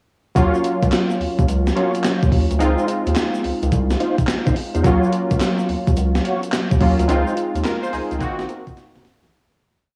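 A gated 80s digital drum machine drives this punchy, slick new jack swing piece with a hard-swung beat of thumpy kick, hi-hat and an overdriven, gated-reverb snare layered with handclaps, ending on a drum fill at 8.8 seconds as the track fades out from 7.1 seconds. A round, deep synth bass bounces through a swung funk line with muted ghost notes and chromatic approach notes, while detuned sawtooth keys hold bright, rootless chords with short fills. In the background, a clean tonewheel organ with slow rotary speaker adds short syncopated stabs and a grainy tube shaker plays sixteenths, the mix carrying the feel of a home cassette recording with light reverb.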